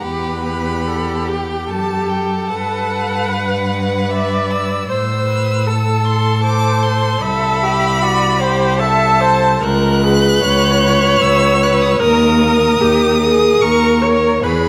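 Melancholic and yearning, this slow romantic movement for string quartet moves in a flexible, rubato 3/4 at roughly 69 to 79 BPM, cut from a longer piece and tuned slightly high at A4 = 441 Hz. A clear, focused violin carries the melody high above the ensemble, reaching up to F#6, while a second violin, smooth and even, sings a lower line beneath it. The viola adds a rich accompaniment with soft attacks and expressive portamento, set at a slight distance, and the cello anchors the bass from C2 up to A2, bowed with vibrato and sitting close and up front. The harmony drifts from Em through Gmaj7 and Am before darkening toward C#m11 at 9.6 seconds and an unresolved D#5 at 12.0 seconds. All four players sound together for the full 14.7 seconds, bathed in a moderate concert hall reverb with a 2.0-second decay.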